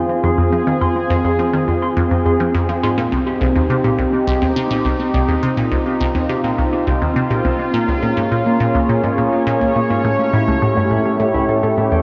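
A squelchy, juicy blip pluck sits up front from 0.2 s, playing a low, bright riff whose pulse and sawtooth tones evolve through a resonant filter sweep, colored by phaser, tape echo and a cassette-tape grain. Beside it, a sweeping sawtooth pad holds detuned, sustained chords that rise in through a slow filter swell and shimmer with chorus. Deeper in the background, a mellow, clean electric guitar plays fingered, compressed arpeggios, its darker tone trailing tape echo. The harmony moves from Fm to Cm, then Bbm7, and lands on A7, giving this straight, steady slice of sequencer-driven space music a mysterious, cosmic pull. A huge, wet reverb and worn, warbling old tape with drifting pitch wrap the whole excerpt, which is cut from a longer piece.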